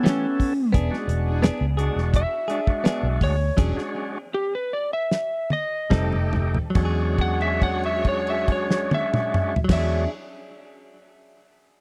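A straight-eighth soul blues groove in 4/4, cut from a longer piece, slows from 0.7 s as a damped 70s drum kit with fat snare and dark cymbals and a round, foam-muted fingered bass sit up front beneath a slightly broken-up, fingerpicked slide guitar melody with tape echo, a thick overdriven tonewheel organ turning on slow rotary, twangy direct-recorded clean guitar stabs with spring reverb and tape echo, and lush bowed strings in the background, coming to a stop at 3.6 s before a drum fill leads into a held note at 6.8 s, all in a dry, close 1970s-style studio sound with a gritty, soulful mood.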